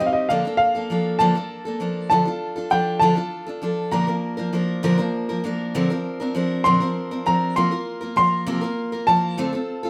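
A bright upright piano carries the melody high in its register, its brilliant, woody tone close and intimate, with short sustain and audible action noise. Beneath it, a picked steel-string dreadnought guitar gives full-bodied, up-front accompaniment with a touch of finger squeak, moving through chords such as Bbmaj7/D, Dm and Fsus4/C in a straight 6/8. This haunting, melancholic folk passage, cut from a longer piece, sits in a moderate studio reverb, both instruments playing together from start to finish.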